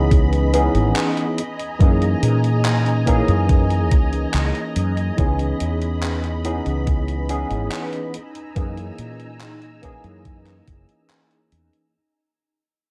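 Nostalgic and hazy, this vaporwave excerpt drifts at 71 BPM in a straight 4/4, with a barky, bright tine electric piano out front, roughened by 12-bit sampler grit, ensemble chorus and tape echo, as it moves between C#m9 and F#13 over a round, dark fretless bass swathed in lush chorus. A thumpy, tape-warm electronic kick sits up front beside gated handclaps and hi-hat from an 80s digital drum machine, while a silky string machine holds slow-attack chords high above, all bathed in light digital ambience. A fade-out begins at 2.9 seconds and runs to the end at 11.9 seconds.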